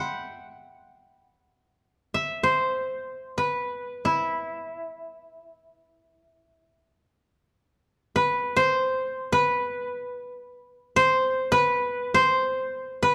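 In free time, this meditative, solitary fragment of Japanese chamber music features a solo koto plucked with fingerpicks in E hirajoshi, tuned to A4 = 438 Hz and ranging from E4 to C6. The koto sits up front with a dry, woody tone, and its opening passage returns at 7.4 seconds. A moderate recital-hall reverb and a dark production surround the short excerpt, which runs 13.1 seconds.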